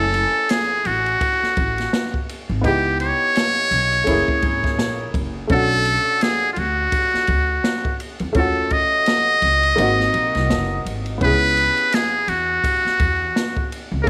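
A small, lightly reverberant room gives this cool, nocturnal jazz-hop cut from a longer piece an intimate, natural sound, with a buzzy, breathy trumpet in a metal mute up front carrying the melody with light vibrato. Behind it, a slightly detuned upright piano with short sustain comps through minor-seventh and dominant changes, while a woody pizzicato upright bass holds down the low end. An acoustic jazz kit with dark cymbals, hi-hat, ride, snare and a boomy kick adds a swung sixteenth-note hip hop feel, and the kick drops out from 9.8 to 11.2 seconds.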